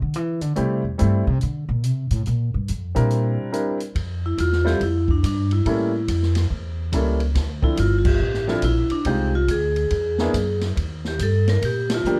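Small-group swing jazz in F major at 141 BPM with a playful, swinging mood, opening on a woody pizzicato upright bass alone before the open drum kit with its dark cymbals and boomy kick, a clear, intimate grand piano with audible action noise, and, from 4.3 seconds, a bright, ringing vibraphone melody played with medium hard mallets and motor off join in a dark production with light reverb, punctuated by band accents at 8.0 and 11.8 seconds.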